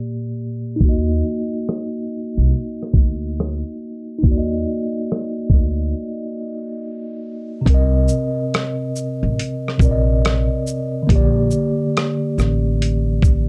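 Lo-fi hip hop at 70 BPM with a swung 16th-note feel, this mellow, nostalgic excerpt opens on a clean, tine electric piano bathed in plate reverb, moving from Bb6 to Ebm under a filter sweep before later reaching Cm7 and returning to Bb6. At 0.8 seconds a woody pizzicato upright bass and a gritty, compressed sampler-style drum kit join, with a thumpy kick, hi-hat, rim click and shaker all sitting up front. A break arrives at 6.0 seconds before a new section begins at 7.7 seconds, all wrapped in a dark, warm, low-pass-filtered production with light reverb.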